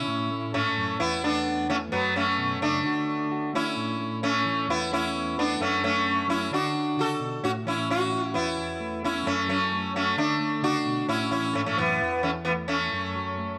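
A highlife excerpt at 131 BPM in A major, sunny and warm in mood, with a sitar carrying the melody up front throughout its 13.6 seconds, its plucked tone buzzing and shimmering with sympathetic strings. Beneath it, a dark, clean electric guitar plays a compressed, fingered accompaniment colored by harmonic tremolo, cycling through A, Esus4, F#m and D. A moderate echo-chamber reverb gives the pair a roomy glow, and a second section begins at 7.4 seconds over the same progression.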